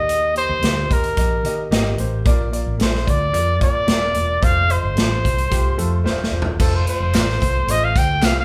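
A straight 4/4 groove at 111 BPM drives this uplifting, danceable fragment of uptempo 1960s-style soul, with an up-front acoustic drum kit, its kick punchy and its cymbals bright, beneath a breathy, vibrato-laden jazz-style trumpet melody. A dark, round, foam-muted electric bass and a warm grand piano accompany through Eb, Bb and F, until a drum fill at 6.1 s leads into a new section at 6.6 s, where a band-limited tambourine and group handclaps join in the background, the band sounding live in one room with a wet studio reverb.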